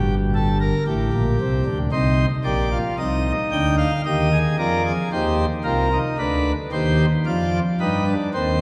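In a straight 4/4 pulse at 56 BPM, this driving yet contemplative fragment from a longer baroque-style three-part fugue sets a solo pipe organ's full, up-front principal chorus across a span from G1 to G5, moving through Gm, Cm and Eb to G7/D within 8.6 seconds, all bathed in a wet church reverb with a 3.5-second decay.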